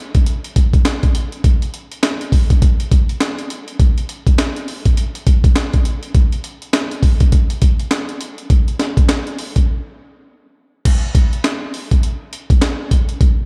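A gritty, sampler-style breakbeat kit carries this bouncy, flirty R&B cut from a longer piece, its pitched-up, compressed sound built on a thumpy kick, a high-tuned snare, hi-hat, handclaps and crash cymbal, all set up front and re-recorded in a large room. The 16th notes swing at 60% over a steady 4/4 within a dark production with little reverb. A break arrives at 9.7 s before a new section begins at 10.9 s, and the drums play through to 13.4 s.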